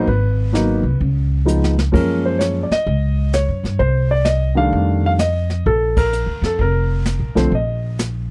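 Grand piano melody and woody, pizzicato upright bass open this relaxed, warm jazz trio excerpt, swinging in 4/4 at 129 BPM over lush extended chords, while a brushed drum kit with dark cymbals and a boomy kick adds a short fill at 1.5 seconds and joins the band accent at 5.9 seconds, all captured in a dry, close 1970s-style studio sound with piano and bass up front.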